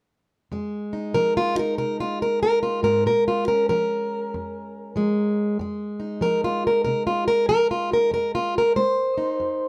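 This short acoustic country blues excerpt in F minor moves at an easy 95 BPM swing in 4/4, its mood mournful and smoky. A lone fingerpicked, plugged-in steel-string guitar with a boxy, parlour-sized tone sits up front from 0.5 to 9.7 seconds, ranging from F2 to C5 as it moves from Fm7 to Bbm7 at 3.0 seconds and back to Fm7 at 5.6. A light reverb softens the room around it.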